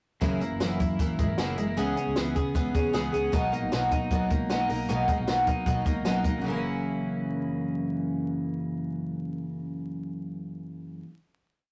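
A shimmering, octave-doubled twelve-string acoustic guitar strums eighths in barre chord shapes up front, alongside a twangy, compressed twelve-string electric guitar in a fingerpicked roll pattern, a round, foam-muted electric bass driving eighth notes with slides in the background, and a compact cocktail drum kit with a punchy kick and high-tuned snare playing a brisk indie backbeat until 6.3 s, in this bright, breezy jangly indie pop piece at 155 BPM in F# mixolydian that moves through F#7, C#m7 and Bmaj7 before a final F#7 chord rings from 6.4 s, heard through a rough rehearsal-room recording with a small, wet room sound, saturation and vinyl crackle.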